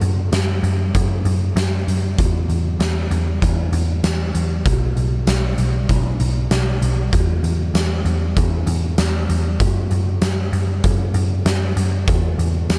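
Haunting and melancholic, this dream pop cut at 97 BPM in straight 4/4, tuned to A4 = 442 Hz, pairs a dark, round, foam-muted vintage picked electric bass moving between B1 and F#2 with an oversized, low-tuned acoustic drum kit of boomy kick, fat snare, hi-hat and tambourine that sits up front, gritty and saturated in a big, pumping room, both playing throughout the 12.8 seconds under light reverb.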